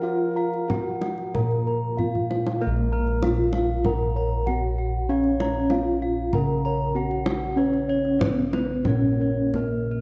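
Over uneven 4/4 beats at 95 BPM, this shimmering, stately Javanese gamelan fragment in Bb pelog sets a soft, padded-mallet bronze metallophone melody with paired-tuning beats against a ringing wooden-mallet metallophone and bright, up-front bossed gongs in arpeggios, while round bossed gongs in the background carry the bass, an airy bamboo bansuri with vibrato sounds only until 1.1 s, and a deep, soft-handed kendang enters at 0.5 s and plays a fill from 2.0 to 2.6 s into the second section, all within a moderate concert-hall reverb and a dark production marked by lossy compression artefacts.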